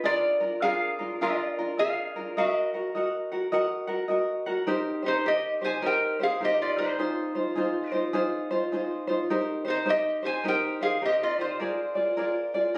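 A light, fingerpicked tenor ukulele opens this languid, relaxed Hawaiian excerpt at 104 BPM on swung eighths, joined at 0.1 s by a metallic, nasal lap resonator guitar played with slide and fingerpicks that carries the melody, both parts sitting up front as the harmony moves from Eb minor to Eb major at 4.7 s over chords such as Eb6, Fm7 and Cm7, the duo captured on a phone in the room with light reverb and compression.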